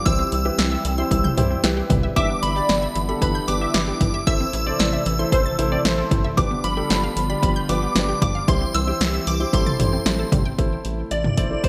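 A shimmering FM bell with a dreamy halo opens this nocturnal, cool synth-pop excerpt, carrying the melody from the first instant over a swirling, detuned sawtooth pad treated with phaser and chorus that sits in the background. At 114 BPM in a straight 4/4 in A minor, a punchy analog drum machine with hi-hat, kick, snare and toms sits up front, joined by a rubbery, hollow square-wave bass and a grand piano with short sustain playing accompaniment. Squelchy, juicy blip plucks with chorus and delay spin arpeggios in the background until 10.5 s, while a funky, detuned polysynth comp with a moving notch adds a second line between 2.2 and 6.2 s. The chords move from C through G6, Am and G7 back to C and Am7, settling on Am for the brief closing section. The bright 1980s-style digital production sits in a lush hall reverb, giving the bell and pad a spacious glow.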